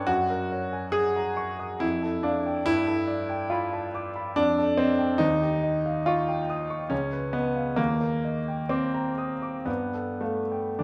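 Rubato phrasing in a slow 3/4, drifting between 50 and 73 BPM, gives this short passage of impressionist solo classical piano a mysterious, nocturnal mood. A clear, intimate grand piano sits up front, its action noise audible as it moves through lush extended harmonies such as Gb69, G9 and Ebmaj7 across a range from C#2 to Eb6. A wet scoring-stage reverb with a 2.0-second decay surrounds the instrument throughout the excerpt, which is cut from a longer piece.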